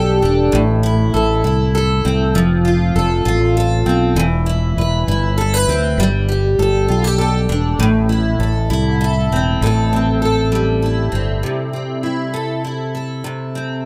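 Set in a small room with light reverb and a faint mains hum, this heartfelt, romantic pop ballad moves in a straight six-eight. A bright, full-bodied steel-string dreadnought guitar, picked and double-tracked, sits up front and carries the accompaniment throughout. Beneath it, a fretless electric bass with an ensemble chorus sounds warm, direct and amped, placed equally close in the mix. The harmony moves from Gsus2 through Am, F and Cmaj7/E before returning to Gsus2 and Am, then shifts to Am7 in a brief second section at 9.6 seconds. The bass stops at 11.4 seconds, and the guitar plays alone over a closing C6 chord in this excerpt from a longer piece.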